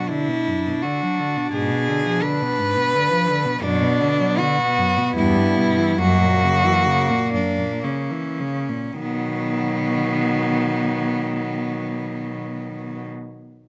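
Three bowed cellos begin together in B minor, with a sul tasto melody carried up front with light vibrato and an airy bow, a pure, floating second line beneath it, and an intimate low accompaniment, before a rich fourth cello enters on the bass at 1.5 s, shaping a melancholic, elegiac classical passage in a rubato 3/4 at 50-87 BPM that slows from 2.6 to 9.0 s and settles on a B chord at 9.0 s, heard through close, detailed microphones with light reverb as a fragment cut from a longer piece.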